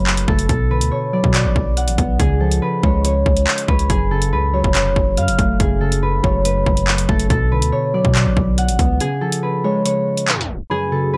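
A dry cut from a longer drill track, cold and dark in mood, moving at 141 BPM in a half-time feel in F# harmonic minor over Bm7, C# and F#m. An up-front, ringing concert harp carries the melody with delay above soft, round electric-piano-like synth keys with chorus, a deep, mellow 808-style bass that drops out at 9.0 s, and an overdriven drill kit of hard-clipped kick, hi-hat and handclaps. A tape stop hits at 10.3 s, and a bright, resonant sweeping pad surfaces in the background at 10.7 s.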